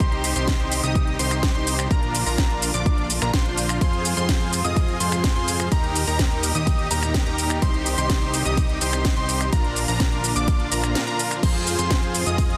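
A punchy, up-front electronic kick drives this straight 4/4 festival progressive house excerpt at 126 BPM in C minor, with a house kit of cracking snare, metallic hats, finger snaps, shaker, ride and crash, under a fat analog bass, a huge detuned supersaw riff with delay, catchy plucky unison arpeggios with delay, and rich bowed strings with vibrato in the background, the bass and melodic parts all sidechain pumping through a Cm–Bb–Fm–Eb progression in a dry, dense, heavily limited mix that feels powerful and anthemic.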